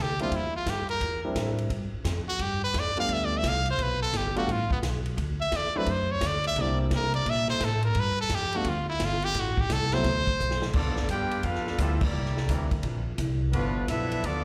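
Joyful and brassy, this big band swing fragment opens with a brilliant, punchy solo trumpet out front, its scooped notes and light vibrato riding over a woody pizzicato upright bass, a warm grand piano and a swinging drum kit with a boomy kick; the trumpet and piano carry slapback echo. After a drum fill, a clear trumpet section takes the melody at 10.8 seconds, with a close-miked trombone section on a second line and a smooth-topped trombone section briefly holding sustained chords around a band accent at 12.0 seconds. The sound has light recital-hall reverb, heard as a live gig through the venue's PA.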